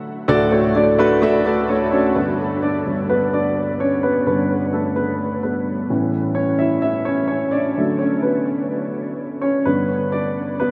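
Drenched in a huge, dreamy reverb with a long 7.5-second tail, this anthemic, uplifting pop excerpt at 128 BPM in 4/4 features a lone grand piano, present and polished up front, colored by analog chorus and diffuse ambient delay, spanning D2 to F#5 as it moves from D through G and A back to D and G, with its solo passage running from 2.2 to 10.7 seconds.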